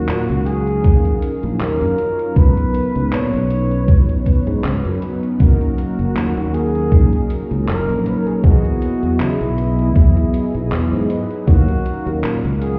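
A breathy, whispered flugelhorn sings a dark, vibrato-laden jazz melody with scooped notes and tape echo, over mellow synth brass chords thickened by analog chorus and cassette wear and a growly, sustaining fretless bass with tube saturation, all starting together. A faint, detuned 8-bit drum machine ticks out handclaps and hi-hat from 0.1 seconds, and a thumpy, up-front electronic kick joins at 0.8 seconds and drops out at 11.6 seconds. The whole woozy, dreamy vaporwave fragment sounds muffled, as if heard through a wall in a stone room, drifting through lush ninth and suspended chords.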